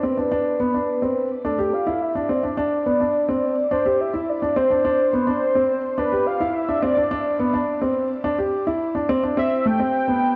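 An upright piano and a velvety synth lead begin together in this hypnotic, intimate piece of electronica, cut from a longer track. The woody piano sits up front with a repeating riff in its middle register, while the smooth lead carries the melody above it with a detuned sawtooth edge, a sub octave beneath, vibrato and chorus. Both parts are bathed in shimmer reverb and digital delay, set inside a dark, echo-chamber space. The opening section up to 9.4 s is a build-up, with a filter sweep on the synth lead and a break arriving at 7.1 s. The harmony rests on a rootless G chord before settling on Am7 at 9.4 s, shortly before the piano and lead draw to a close.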